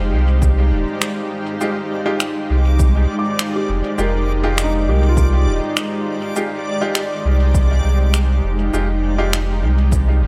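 Light, digital ambience frames this deep, meditative ambient dub passage, cut from a longer piece, where a round, soft sub bass with tube saturation sits up front beneath a cloudy, evolving granular pad holding an Fm9 chord and a reversed, dreamy swelling texture on D5. A felt-muted upright piano plays mellow arpeggios through dub echo, and from 1.6 seconds a brilliant, woody upright piano adds stabs in the background, also echoed. From 0.4 seconds a punchy, layered electronic kick, re-recorded in a small room, sits back in the mix alongside electronic shaker and finger snaps treated with dub echo.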